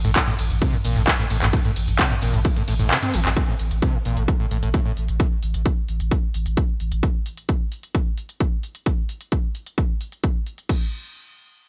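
A screaming, squelchy acid line leads this dark, driving peak-time techno excerpt, its resonant sawtooth tone snapping in with a fast filter pluck and decaying, with gritty distortion, a touch of chorus, delay and sidechain pumping, before it stops at 4.9 seconds. Beneath it a round sine sub bass holds a deep, sustained low note with overdrive, a low-pass filter and the same pumping, ending at 7.0 seconds. The overdriven drum kit sits up front with smooth hats, handclaps, shaker, ride, crash and toms, joined by a heavy, layered electronic kick that briefly drops out just before the opening drop gives way to the next section at 3.4 seconds. The opening rests on a single minor chord, after which the harmony falls away; the acid line and sub bass linger for a while, and then the drums carry the rest of the passage. The production is bright and digital in a 1980s style, with light reverb.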